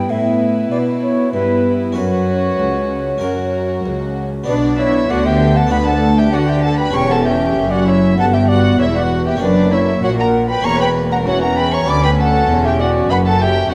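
A bright wooden flute, airy and tongued with a straight tone, carries the melody from the first moment of this stormy, driving excerpt from a baroque-style concerto movement in B minor, moving at 97 BPM in a straight 4/4. Beside it, a rich violin section with a smooth top shares the tune, while a second, close violin section with light vibrato supplies a second line and a distant, dark viola section fills in the accompaniment. A plucked harpsichord in the French style, with one set of strings, sits in the background, and a nasal cello section anchors the bass; every string section has the reedy gut-string tone of period playing. At 4.5 s a double bass section joins the low end, deepening the foundation as the harmony moves from Bm through C#dim/E to F#7/E before settling back on Bm. The recital hall reverb is wet, and the overall production leans dark and warm.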